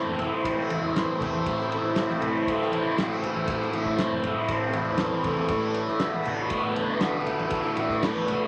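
A dark, trippy stretch of psychedelic rock cut from a longer piece opens with a double-tracked fuzz guitar riff sitting up front, its distortion colored by a phaser, over lush bowed strings holding sustained chords and the buzzing, shimmering drone of a softly plucked tanpura. Moments later a round, overdriven picked bass settles low in the mix, alongside low-tuned congas struck with hard hands, close and dry. A cloth-damped drum kit follows at 0.2 seconds, thuddy and dry with a fat snare, tight kick and dark ride cymbal under a rolled-off top. The groove moves at a straight 119 BPM in 4/4, centered in A dorian, with the harmony resting on Am before shifting to Bm7/A at 5.5 seconds. A moderate large-studio reverb lends the whole mix some space, while a layer of vinyl crackle gives the recording a worn, vintage grain.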